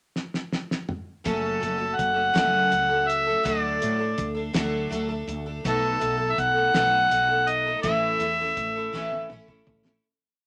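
A slow, straight 6/8 lilt at 55 BPM in dotted quarters opens with a drum fill on a cloth-damped, thuddy kit with fat snare and tight kick, setting up a jangly folk rock and heartland rock piece in A major in which a bright, shimmering, octave-doubled twelve-string acoustic guitar strums open chord shapes, a round, woody fretless electric bass drives eighth notes, and an up-front, mellow harmonica with scooped notes carries a vintage, motif-based melody from 1.3 seconds over F#m, D, B7 and A, before a fade-out begins at 7.8 seconds under moderate studio reverb.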